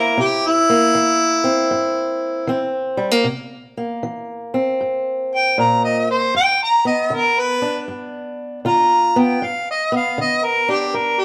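A mellow harmonica carries the melody in a jazz-inflected style, its scooped notes sounding distant and roomy even as it sits up front, in this rollicking yet laid-back acoustic country blues cut from a longer piece. Beneath it, a boxy fingerpicked acoustic guitar keeps a swinging accompaniment at 78 BPM in 4/4, with audible finger squeak, moving from C7 to G7 at 6.3 seconds in C mixolydian. The duo plays live in a stone room whose moderate reverb lends the performance an easy, natural space.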